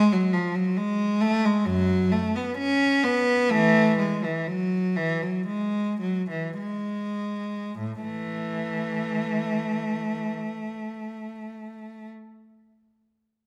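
Flowing and dance-like, this excerpt from a baroque-style suite movement for unaccompanied cello moves in a free, rubato 4/4. A single bowed cello plays alone from 0.0 to 12.1 seconds, its rich, smooth tone with light vibrato sitting close and up front in a moderate recital hall reverb. The opening phrase gradually slows until a new section begins at 7.8 seconds.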